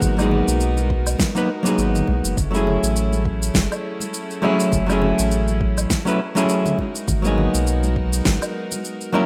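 Relaxed and smooth, this sunset chillout passage moves at 102 BPM in 4/4 with a swung sixteenth-note feel, set in F# dorian and cut from a longer piece. A dark, clean hollow-body jazz guitar sits up front with a picked accompaniment and a touch of delay, while a bright, earthy chamber string section holds bowed sustained chords close behind it. Underneath, a deep, round sine sub bass with a fast attack anchors the low end alongside a soft electronic kick, and both stop at 8.4 seconds while the other parts carry on to the end. Electronic shaker, woodblock and a fat snare fill out the groove, with very quiet, saturated congas played with soft hands adding a compressed acoustic layer. The harmony moves from G#m9 to F#m9 at 2.4 seconds and back to G#m9 at 6.8 seconds, all wrapped in light reverb and digital ambience in a rough home demo mix.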